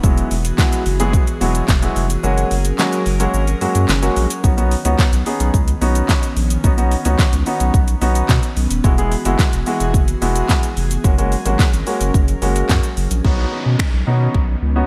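A straight 4/4 dance-pop groove rides on a punchy, layered pop kit of finger snaps, handclaps, metallic hi-hat, shaker, fat snare and kick, with the kick dropping out between 2.2 and 4.4 seconds. A deep, saturated sub bass and an up-front grand piano pump against the beat beneath a soft, breathy pad with chorus in the background, all cycling through add9 chords in a carefree, euphoric mood. The bright 1980s-style digital sheen and light reverb frame this excerpt, which closes with an electronic downlifter entering at 13.2 seconds.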